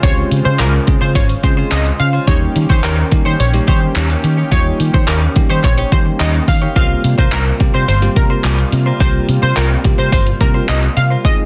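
Confident and energetic, this dance-pop excerpt drives at 107 BPM in a straight 4/4, built on an up-front deep house drum kit with a deep kick, hi-hat and handclaps, and a dark, round, foam-muted electric bass that pumps with sidechain. A detuned sawtooth pluck carries the melody with chorus and dub echo over bell-like tine electric piano, a smooth, warbling pad that also pumps, and a picked clean guitar riff set in the background, while a very quiet, crisp group handclap joins from 0.6 to 8.6 seconds. The harmony moves from Dbmaj7 to Eb7 and then C7sus4, all within a dense, heavily limited modern master.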